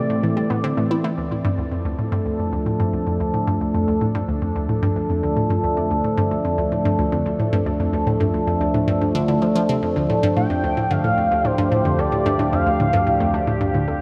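A hollow, bouncy square-wave pluck riff with chorus and analog delay sits up front in this cosmic, hypnotic stretch of sequencer-driven ambient space music, together with a morphing wavetable pad of sustained chords, a very quiet warbling unison pluck playing arpeggios, and a mellow analog drone bass from 3.6 s, while a shimmering, nasal pulse-width lead with vibrato and portamento carries the melody from 10.4 s before the music fades out from 12.7 s inside a huge, wet reverb.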